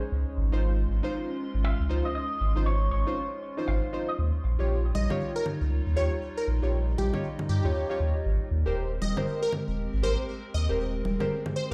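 Deep house with a hypnotic, late-night mood, where a warbling, lo-fi pad with chorus and phaser and dark, nasal chord stabs with dub echo sit over a round sine sub bass up front, as a twangy envelope-filtered electric guitar carries the melody from 1.6 to 4.1 seconds before a punchy, detuned unison pluck lead and layered electronic congas take over at 4.9 seconds, all heard through a large, bare-room reverb in this excerpt cut from a longer piece.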